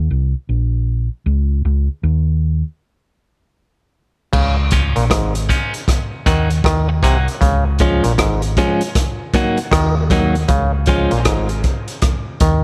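Dub reggae with a hazy, laid-back mood and a swung sixteenth-note feel, heard as a short cut from a longer piece. A dark, round hollow-body electric bass, fingered and sitting up front, opens alone as a break before the other parts arrive at 4.3 seconds. There a crunchy breakbeat kit comes in, gritty and saturated with dark cymbals, a tight kick, rim clicks, hi-hat and a crash, alongside a bright, stringy clav riff played clean through a combo amp and trailed by dub echo. Just after, at 4.7 seconds, an electric guitar at the edge of break-up adds twangy, scooped, compressed accompaniment soaked in spring reverb, filtered at the low end and echoed, dropping out at 11.1 seconds. The harmony settles into an easy sway between Db and Ebm over a small room ambience.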